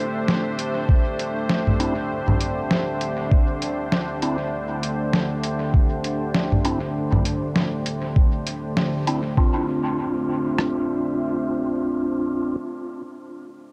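A swung 99 BPM groove of muffled, pitched-down sampler drums drives this hazy, deep ambient dub excerpt in 4/4: an up-front thumpy kick and rim click sit under overdrive, while congas, hi-hat and a medium-tuned snare carry overdrive and dub echo until 9.2 s. A moody, detuned sawtooth pad with a sub octave, chorus, built-in reverb and a long release holds Cadd9/D before shifting to Dm7 at 9.4 s, and a soft, flute-like tonewheel organ with key click and a fast rotary speaker adds echoing stabs from 1.8 s, with the band hitting a brief accent just before the chord change.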